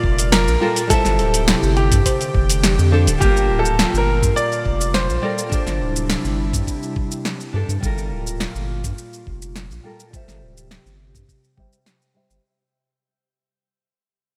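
A bright, 1980s-style digital sheen and a lush hall reverb frame this wistful sunset chillout excerpt, which begins fading at 3.2 seconds as the section changes. A baby grand piano with a natural, short-sustained tone carries the melody through delay and shimmer reverb until 6.3 seconds. Beneath it, a fingerpicked nylon-string guitar with a classical touch and an airy, breathy pad with a slow attack and long release hold the harmony over Gm9, Am7, F69 and D9sus4; both pass through a filter sweep once the fade begins. A round, dark analog bass sits up front, joined by a knocking, tape-warm electronic kick and an overdriven deep house kit whose punchy snare, hi-hat and shaker sound as if re-recorded in a small room. Early on, a soft, gentle pluck adds detuned, wave-folded arpeggios in the background, shaded with chorus and delay.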